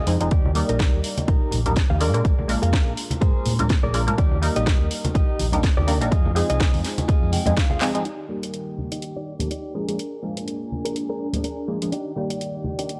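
A dry, gritty, cassette-toned slice of sunny, joyful filtered disco house at 124 BPM in Eb major, with a swung 16th feel and filter sweeps running across it, as a bright, scooped clean electric guitar riff and a detuned sawtooth polysynth comp pump over a round, hollow-body fingered bass and a punchy, overdriven electronic kick that drop out around 7.5 to 7.7 seconds, while an overdriven house kit with cracking snare, handclaps and hi-hat, plus hard-hand tambourine and congas in the background, keeps going after a guitar fill and drum fill, and dark, distant bowed strings drift in from 8.1 seconds.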